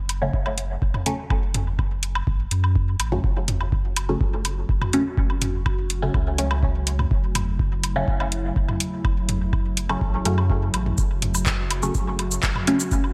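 A bright, 1980s-style digital production with light reverb and a digital ambience frames this deep, hazy dub techno excerpt, which sits on a single F# minor chord at 124 BPM in a straight 4/4 feel. A clean, smooth sine sub bass, dark and sustained with tube saturation and sidechain pumping, anchors the low end under a deep, tape-warm electronic kick. A booming analog drum machine sits up front with cabasa, handclaps and metallic hi-hats bathed in gated reverb. Electronic woodblock and layered toms add dub echo, gated reverb and pumping. The up-front filtered chord stab, a muted, detuned blend of sawtooth and pulse waves with a fast pluck and short decay, is coloured by phaser and dub echo. From 3.9 seconds a warbling, nostalgic pad of detuned square and triangle tones with ring modulation fades in slowly, its lo-fi, mellow chords softened by chorus and a long release.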